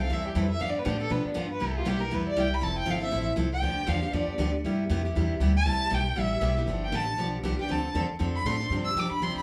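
From the first moment, a bowed violin takes a solo over picked steel-string acoustic guitar and pizzicato upright bass in this short fragment of charming, swinging acoustic string swing in the jazz manouche tradition. The violin sits up front as a single player with a rich, focused tone and vibrato, carrying the melody from the middle register up into its higher reaches. Beside it, the guitar sounds bright and fresh-stringed, also up front, with an auditorium-like body as it supplies the accompaniment. The bass anchors the low end with a woody, thumpy pizzicato. The harmony moves through seventh chords such as Am7, G7, Cmaj7 and Fmaj7, and the passage repeats its opening section at 5.7 seconds before arriving at a G7sus4 near 8.7 seconds. A moderate studio ambience with gentle reverb gives the trio a natural, close room sound.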